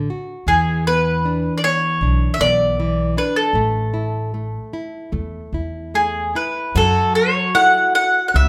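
Nostalgic and tender, this rubato fado-style ballad in 4/4 sets an up-front, bright, double-strung bowl-back mandolin melody over a small, fingerpicked nylon-string guitar and a dark, thumpy pizzicato upright bass, with a boxy, shimmering, octave-doubled twelve-string acoustic guitar joining in the background at 6.8 s on an F#m7 chord, the whole fragment carried in moderate recital hall reverb.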